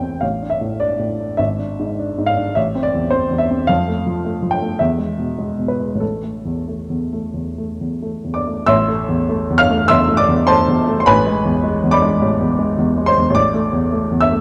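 Stormy and bittersweet, this romantic classical character piece for solo upright piano moves in A minor and 4/4 at a rubato 88-110 BPM, its woody, up-front tone with short sustain ringing into a moderate recital-hall reverb within a dark production, as the harmony turns from Dmadd9/A through E7/G# and Am toward a new passage at 8.7 seconds before this cut from a longer piece settles on A5 at 13.3 seconds.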